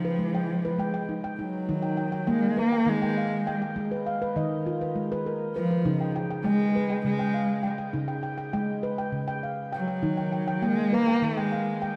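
A straight 7/8 pulse moves at 201 BPM, counted in eighths, giving this meditative world piece for tuned percussion a gentle, meditative mood. A handpan carries the arpeggios across the whole 12-second excerpt, spanning Db3 to G5 with a ringing, mellow nitrided-steel tone played with soft fingertips and sitting up front under shimmer reverb. Alongside it, a single bowed cello sings the melody from 0.0 to 11.9 seconds between F3 and Bb3, close and expressive, with vibrato and portamento, its sound treated with shimmer reverb and delay. The harmony opens on a rootless Db, then moves through Ebm at 1.7 seconds, Abm, Db and back to Ebm. A wet echo chamber and studio reverb with a 1.9-second decay wrap both instruments in a dusky, warm production, and the passage is cut from a longer piece.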